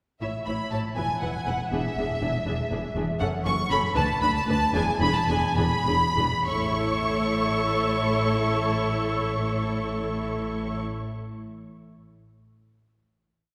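Up-front violins carry an expressive, vibrato-rich melody in this brief, lively and cheerful classical-period piece for string orchestra in A major and 6/8, with a focused second violin section doubling the tune in unison and at the octave, clear violas adding repeated notes and sustained chords, smooth-topped cellos and distant double basses sharing a lush bowed bass line, set in a reverberant concert hall, as the tempo slows from 2.5 s to 6.5 s before a final A chord sounds at 6.5 s.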